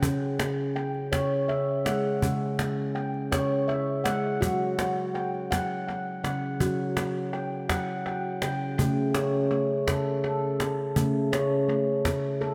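Hypnotic and meditative, this world piece is cut from a longer work and moves in a gentle, straight 6/8. A handpan carries the music with ringing arpeggios from C#3 to G5, its stainless steel tone mellow and airy under soft fingertips, sitting up front and trailed by analog delay. A cajon sits lower in the mix, snappy with its snares, compressed and saturated, and also passed through analog delay. The harmony moves from C#m to F#5, then settles on A/C# as a new section begins at 8.8 seconds. A wet plate reverb with a long tail and an echo-heavy mix wrap the performance in a spacious, drifting haze.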